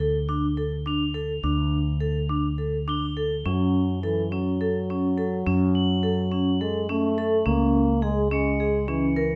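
Bright, ringing arpeggios on hard-mallet vibraphone with a slow motor vibrato open this restless, pensive excerpt of contemporary chamber music in 7/8 at 210 BPM, over an up-front, amped fretless electric bass; soft, shimmering crotales glint high above from 0.9 s, and a mellow, punchy French horn enters at 3.5 s with a smooth second line as the harmony moves from Dm through F#m to C#m in a dark, moderately reverberant recital-hall sound.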